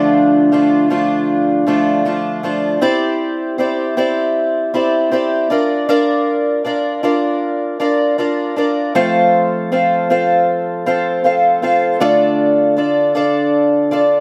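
Easy-going and heartfelt, this short pop excerpt is carried entirely by a single fingerpicked twelve-string acoustic guitar, cut from a longer piece. At a relaxed 78 BPM in straight 4/4 and F major, the guitar plays alone from 0.0 to 14.2 seconds, ranging from D3 to F5. It has a boxy archtop character and a bright, shimmering, octave-doubled sound, and it sits up front in the mix. The harmony moves from Dm through Cadd9 and Bb/D, arriving on F around 8.9 seconds before returning to Dm at 12.0 seconds. A light reverb gives the sound a gentle sense of space.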